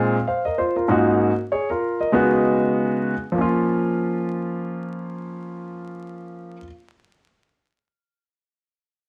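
Hip hop with a mellow, cool mood, this short cut from a longer piece features a solo upright piano at an easy swung pace from 0.0 to 6.6 seconds, its woody, intimate tone placed up front with audible action noise, long sustain and a slapback echo. Suspended ninth chords drift from Bb9sus4 through Ab9sus4 and Db9sus4 before settling on Bbm at 3.4 seconds. A small, reverberant room and dark production with vinyl crackle frame the playing.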